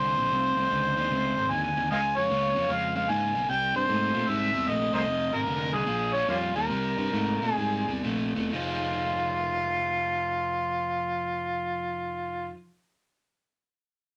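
All three parts open together in this brooding, soulful electric blues shuffle, a short cut from a longer piece with a swung eighth-note feel. Out front, an amplified, overdriven harmonica carries the melody as a jazz-style solo, its gritty tone shaped by light vibrato, soft attacks, scooped notes and tongue slaps. An overdriven semi-hollow guitar, picked and also up front, plays a riff with a rounded hollow-body warmth, while a fingered electric bass, recorded direct and amped, anchors the low end. The pace slows from 5.1 to 8.5 seconds as the progression moves through a C7 turnaround, and a new section begins on Fm7 at 8.5 seconds. Moderate studio ambience gives the trio a close, lived-in room sound.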